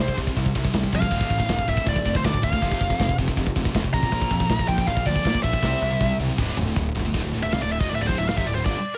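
This epic, heavy metal excerpt in D minor at 159 BPM opens with everything at once: a high-gain lead guitar carries the melody up front over a bright, scooped, double-tracked rhythm guitar riff, a fuzzy, overdriven picked bass and a tight, mid-forward acoustic drum kit with a tight kick and medium-tuned snare. The harmony moves from C5 through Dm, F5 and Bb to C. After a drum fill at 5.6 seconds, the lead guitar breaks into a distorted, picked solo at 7.1 seconds over a D5 power chord, all in a dry, close studio sound.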